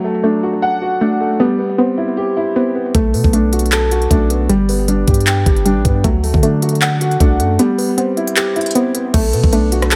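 A half-time trap feel in 4/4 takes hold when the drums and bass arrive at 2.9 seconds, giving this menacing, eerie hip hop passage, cut from a longer piece, its weight. From the opening, a dark, boxy grand piano sits up front with long sustain and a low-pass filter, playing accompaniment over a cycle of D, Cmaj7, Bm7 and G. Beside it, a soft, round pluck spins gentle arpeggios in a narrow register, its detuned, wave-folded tone softened by chorus, delay and a low-pass filter. The long sustained 808-style bass is deep and mellow, a sine tone with a fast attack that then decays. The electronic trap kit is overdriven and close, with a knocking kick, crisp hi-hats, handclaps, rim clicks and crash cymbal, and the kick drops out from 7.6 to 9.1 seconds. A light reverb gives the mix a modest sense of space.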